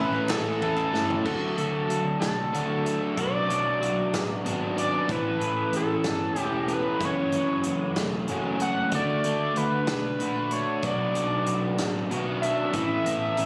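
A screaming, gritty synth lead with distortion and slapback echo carries the wistful melody up front over an up-front overdriven semi-hollow guitar with analog chorus, a crunchy background guitar riff, a round, dark hollow-body bass and a distant, roomy indie drum kit whose fill begins at 0.9 seconds after a very quiet group handclap, all in a jangly 6/8 indie rock excerpt captured on a phone in a small room with club reverb.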